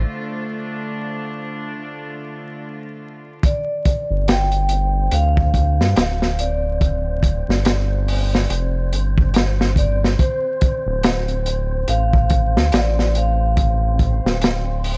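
A dark, crackling vinyl haze with studio reverb surrounds this melancholic trip hop piece at 71 BPM, its sixteenths swung, cut from a longer piece as a reedy, gut-string chamber ensemble holds sustained chords on Dm over a round, deep analog bass until the break ends at 3.4 seconds. Crunchy, saturated breakbeat drums with a tight kick and rolled-off top then enter as the harmony moves to G5, while a close-miked vibraphone with medium mallets and fast motor vibrato rings out a metallic melody through dub echo from 3.5 seconds. An airy, breathy wind-like noise texture drifts in the background from 4.0 seconds, and the chords settle on Dm7 at 10.2 seconds.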